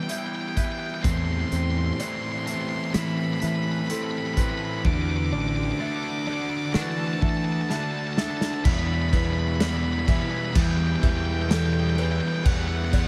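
Lightly reverberant and cinematic, this cathartic post-rock excerpt in E minor moves at a slow 63 BPM: a punchy, up-front loose indie drum kit with rolled-off cymbals and a growling fingered fuzz bass anchor a build-up whose drum fill arrives at 7.7 seconds, while a sludgy overdriven guitar riff joins the bass at 1.0 seconds alongside a raw garage guitar riff and a dark octave-fuzz lead melody with delay. A bright, morphing wavetable pad sustains chords from Em through Amadd9/E and Dadd9; a felt-muted upright piano with audible action noise adds intimate delayed arpeggios, and a twangy, clean electric guitar drenched in lush chorus picks arpeggios until 8.7 seconds, when the music returns to Em.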